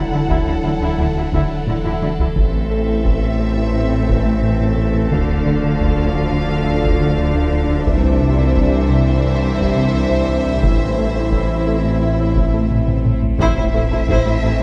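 A brooding, relentless hybrid film cue in A minor at 87 BPM opens on a lush bed of strings, with expressive vibrato violins carrying the melody over a focused second violin line, violas sliding with portamento, smooth, distant cellos, and soft-attack double basses. Dark, roomy French horns and an evolving wavetable pad with phaser hold sustained chords, while a nasal, detuned synth bass riff, a deep, punchy sub bass and a warm tuba anchor the low end, and heavy-stick taiko drums pound beneath with fills at 1.7 and 12.7 seconds. The chords move from Dadd9 through Am, Dm and Cadd9 in a dark, warm mix with scoring-stage reverb, and a huge impact lands at 13.4 seconds.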